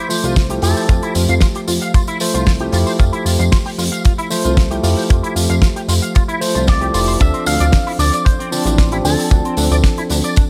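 A tight, dry kick drum sits up front in this feel-good, groovy nu-disco excerpt at 114 BPM in F major, joined by a damped 70s kit with a fat snare, hi-hat and a very quiet tambourine, while a glossy, retro chorused synth bass with tube saturation and sidechain pumping anchors the low end. A clean tine electric piano, played through a combo amp with pumping and tape echo, carries the accompaniment over Fmaj9, moving to Dm7 at 7.2 seconds, as a bright, twangy envelope-filtered guitar plays a picked riff with ensemble chorus. A second envelope-filtered guitar, warmer in tone and soaked in spring reverb and tape echo, plays a brief melody at the start and returns at 6.7 seconds, all set in a small room ambience.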